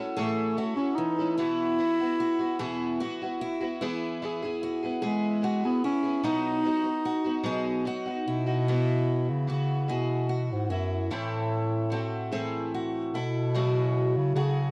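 A mellow, close-miked bass clarinet carries the melody in a classical style, sitting up front from 0.2 seconds and ranging from low F#2 up to E4. Beneath it, a picked twelve-string acoustic guitar provides shimmering, octave-doubled accompaniment, also placed up front, while an old ladder-braced acoustic guitar adds boxy picked arpeggios complete with audible finger squeak. This acoustic folk piece moves in a gentle 6/8 with a nostalgic mood, cut from a longer work. Its harmony drifts from A and Bsus4 through E and B in the first section, then shifts at 8.7 seconds to a second section that passes through Esus2 and A minor before settling on F#madd9. The sound is dry and intimate, with little reverb, in the manner of a close 1970s studio recording.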